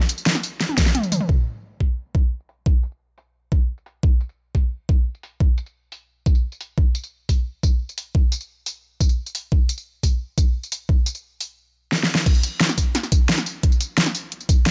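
This dry, dark-toned excerpt from a longer drum and bass piece has a futuristic edge, its top end rolled off and a close, nearly reverb-free sound. An overdriven dubstep drum kit sits up front with a huge snare, crash cymbal, hi-hat, tambourine and toms, all filtered, while an overdriven electronic kick drum with a knocking punch enters at 0.8 seconds. A drum fill closes the opening drop and another leads into the drop's return at 12.3 seconds, and a filter sweep runs over the drums through the long middle stretch from 1.3 seconds.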